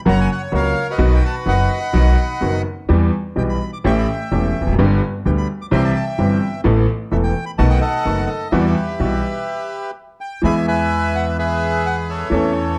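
A dark, warm production with light reverb frames this tense, melancholic tango fragment, cut from a longer piece and played with a rubato feel. A reedy, up-front bandoneon carries the melody over a brilliant, slightly detuned upright piano whose worn, intimate tone and audible action noise sit close in the mix, while a woody pizzicato upright bass anchors the low end. All three play from the opening moment, halt together in a stop from 9.5 to 10.4 seconds, then resolve onto an E chord as a new section begins.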